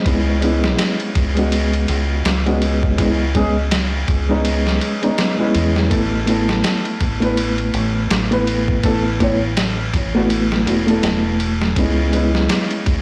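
Brooding and hypnotic, this short trip hop excerpt moves at a slow 82 BPM in 4/4 with a swung sixteenth-note feel, set in C# minor and cut from a longer piece. A felt-muted upright piano carries the accompaniment from the very start, its soft, boxy tone close and intimate, with audible action noise and a harmonic tremolo and tape echo coloring its chords. From 0.1 seconds a deep dub fingered electric bass sits low and round, dark and punchy, while a sampler-style drum kit of thumpy kick, medium-tuned snare and ride cymbal sounds pitched down, muffled and compressed, tape-warm and up front as if re-recorded in a small room. The harmony shifts from C#m7 to Asus2 at 5.9 seconds and back to C#m7 at 11.8 seconds. The whole recording is blown-out and overdriven, with light reverb and a small room ambience giving it a gritty, enclosed character.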